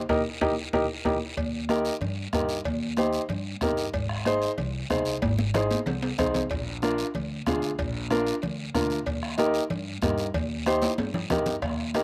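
Open-air and nearly reverb-free, this festive, danceable cumbia excerpt at 187 BPM in Eb major puts a dark, mellow upright piano up front over woody pizzicato upright bass, a distant soft-beater bombo, bright high-tuned congas in the background, a raspy guiro, and ringing, saturated timbales and cowbell with slapback echo, opening on a band accent and drum fill and bringing further fills at 5.2 and 10.8 seconds as the chords move from Eb through Ab and Bb back to Eb.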